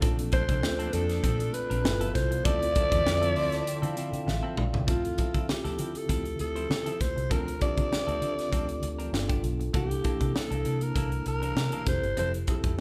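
A moderate large-studio reverb surrounds this polished 1980s jazz-funk pop excerpt, a slick, bittersweet groove in D minor at 99 BPM with a light 16th-note swing, built on a crisp, up-front fusion drum kit with a high-tuned snare and tight kick, a dark, round, foam-muted fingered bass, a mellow tine electric piano heard through its built-in speakers, and a compressed, picked clean guitar riff set back in the mix. Soft-attack sul tasto strings float beneath the opening chords of Bbmaj9, G13 and Dm9 until 4.9 seconds, where an electric piano fill and a drum fill lead into the second section. From 0.3 seconds a breathy, raspy alto saxophone with vibrato and a smooth top carries the melody up front, over harmony that moves through G7 and C13 to Fmaj7.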